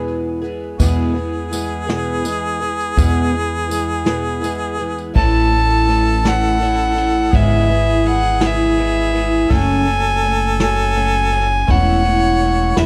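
Nostalgic and peaceful, this short acoustic folk passage moves at an unhurried 55 BPM in a straight 6/8, as if cut from a longer piece. A fingerpicked twelve-string guitar sits up front with a bright, shimmering, octave-doubled parlour tone, finger squeaks audible, while a pizzicato upright bass adds a woody low end and a vintage kit played with brushes stays in the background, its dark cymbals and punchy kick rolled off on top. A clear harmonica with classical-style vibrato carries a second line throughout, and a jingly tambourine joins faintly from 0.8 to 5.1 seconds. At 5.2 seconds a warm, nasal fiddle with a reedy, boxy gut-string tone takes the melody up front, as the harmony moves from E through A, E6/G#, and F#madd9 to A/E. The dry, close sound, with little reverb, recalls a 1970s studio session.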